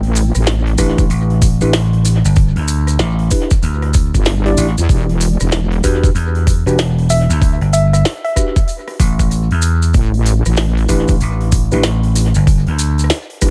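A swung 95 BPM glitch hop groove in 4/4 rides a knocking, tape-warm electronic kick and a glitchy kit of clicky hats, rim clicks and a tiny overdriven snare, with grainy, close maracas adding texture through a swaggering, funky passage cut from a longer piece. A heavy, wobbling sawtooth bass with chorus and tube saturation sits up front beside a punchy, amped slap bass, the wobble bass dropping out from 5.8 to 9.9 seconds while mellow tine electric piano stabs pump with sidechain over chords moving from A7sus4 to Em7 to A9sus4. At 7.1 seconds a woody, wave-folded pluck with 12-bit sampler grit briefly plucks a high E, and the dry, echo-heavy mix throws dub echo across the drums, maracas, piano and pluck.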